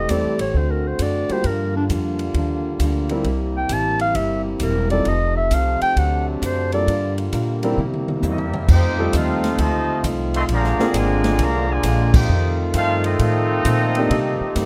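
A vibrato-laden clarinet opens this joyful big band swing passage, its scooped notes and smooth top carrying the melody up front over bright, loose trombone chords and a woody pizzicato upright bass. Swinging at 133 BPM in 4/4, the rhythm section fills in with a polished, airy drum kit, featuring a punchy kick and medium-tuned snare, a natural-sounding grand piano and a very quiet, dark, clean hollow-body electric guitar. The clarinet solo ends at 7.2 seconds, and a drum fill leads into a brassier section in F major, where a vintage trumpet section with light vibrato takes the melody from 8.3 seconds. Beneath the trumpets, a nasal, straight-muted trombone section plays a loose second line in the background. A band accent lands at 12.1 seconds. Light reverb colours the rough home-demo mix, and the recording is cut from a longer piece.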